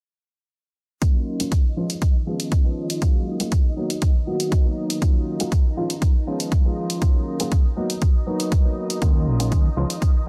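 Filtered disco house with a groovy, funky feel, this short excerpt rides a filter sweep across its full length as a dark, mellow grand piano with audible action noise plays phased, pumping chords over a lush string machine thick with ensemble chorus and vintage 12-bit grit, moving through Ebm9, Db7, Gbmaj9 and Bmaj7. A punchy, overdriven electronic kick sits up front beside an overdriven hi-hat re-recorded in a large room, while a fat, detuned analog bass with a saturated filter pluck enters only at 9.0 seconds. The mix is dry, dense and heavily limited.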